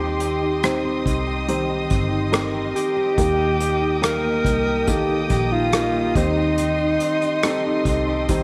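Tender and heartfelt, this pop ballad excerpt puts a dark, breathy alto saxophone up front on a jazz-style melody with vibrato, over a soft felt-muted upright piano with audible action noise, intimate bowed sul tasto strings, a full-bodied fingerpicked steel-string acoustic guitar in the background, a round foam-muted electric bass, and an unplugged drum kit played with bundle sticks that enters at 0.2 seconds, the whole set in a moderate echo chamber reverb.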